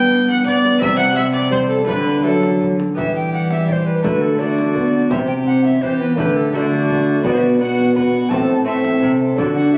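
Captured on a phone in a wet recital hall with club reverb and vinyl crackle, this festive, stately excerpt of a renaissance-style consort dance in 3/4 at 168 BPM sets an airy, close-miked alto recorder melody with chiff and vibrato above a distant, nasal gut-string viola second line, a smooth-topped solo trombone and bright, fingerpicked double-strung lute in accompaniment, and a reedy period-style cello bass, while a deep, hard-handed frame drum sits in the background from 0.3 s to 9.5 s.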